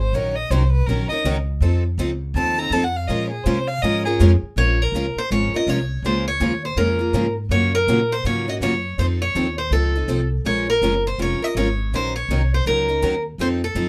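Acoustic string swing in the jazz manouche style, this bittersweet, fiery fragment in Bb minor moves at a brisk 163 BPM with a swung feel. A bowed violin opens with expressive vibrato and portamento over a woody, thumpy pizzicato upright bass and two boxy, picked steel-string parlour guitars picking out chords such as Ebm7, F7 and Bbm9. The violin bows out at 4.1 seconds, and at 4.6 seconds a bright concert-sized picked guitar takes the melody with audible finger squeak, all set in light reverb.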